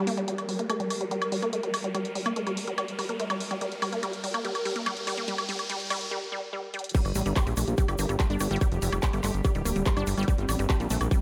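A bright, warbling sawtooth unison pluck riff drives this alien psychedelic trance excerpt, riding a tape echo and sidechain pumping over a soft, pulsing gated triangle texture of sustained chords with chorus, while an electronic riser and filter sweeps shape the build-up alongside a layered electronic kit of hi-hat, handclaps, woodblock and crash, until a brief break and drum fill give way at 6.9 seconds to a drop where a tight, up-front electronic kick, a grainy egg shaker in the background and a fat, detuned analog bass enter, all set in a lush hall reverb.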